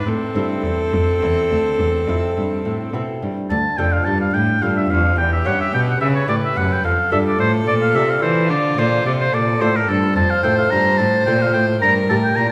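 A steady 12/8 pulse at 72 BPM carries this introspective, solemn baroque-style sonata movement, cut from a longer piece and turning from A minor to D minor at 3.5 s, as a clear, up-front oboe with light vibrato carries a second line beside a period-style, gut-string violin melody, a rich, close bowed cello holds the bass, and a bright, delicate fingerpicked lute with double strings supplies the accompaniment, set in a wet recital-hall reverb.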